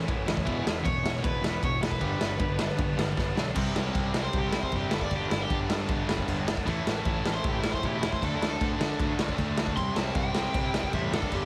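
Heavily compressed with a radio-like sound and light reverb, this excerpt of rowdy, upbeat punk rock at 155 BPM is driven by an up-front raw garage drum kit with a boomy kick and dark cymbals in a small, pumping room, alongside a bright distorted electric guitar riff, a very quiet sludgy guitar, a double-tracked tight distorted guitar and a punchy, growling picked bass, while a crunchy overdriven lead guitar with delay enters at 0.8 seconds and, after a drum fill, breaks into a solo at 3.6 seconds over chords moving from E through G, C, A and D.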